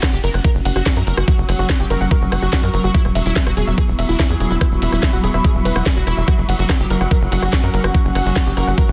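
Psychedelic and hypnotic, this short excerpt of psychedelic trance runs at 144 BPM in a straight 4/4, cut from a longer piece and built on an F#5 chord that moves to E5 at 2.9 seconds and returns to F#5 at 6.3 seconds. An overdriven electronic kick knocks up front, joined by a layered techno kit with a cracking snare, smooth hi-hats, ride cymbal and rim click, also overdriven. Beneath it, a tight sequencer bass in sawtooth and square-wave tones sits close and punchy, its nasal filter pluck driving and evolving between E1 and F#2. A lush, detuned unison pluck carries the riff from E4 to F#5, colored by a noise layer, a moving notch, cassette tape grit, delay and sidechain pumping. Behind these, a warbling, nostalgic tape-like pad drifts through chorus, phaser and reverb, while a swarming, granular drone holds a tense F#3 in the background, both breathing with the sidechain. The mix carries light reverb and a dense, heavily limited modern master.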